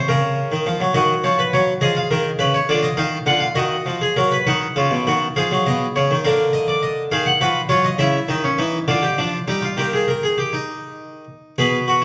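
Classical baroque-style three-part fugue for solo harpsichord in Eb minor, moving at 68 BPM in dotted quarters in a straight 6/8 with a serious, driving mood. The Flemish-style instrument sits up front with a full, brilliant, plucked tone from its three sets of strings, spanning B2 to Gb5 and ringing with an airy bloom in a wet recital hall. The harmony leans on minor and diminished colours such as Fm7b5 and Fdim, turns to a new passage at 4.5 seconds, and reaches D# before this fragment of a longer piece breaks off.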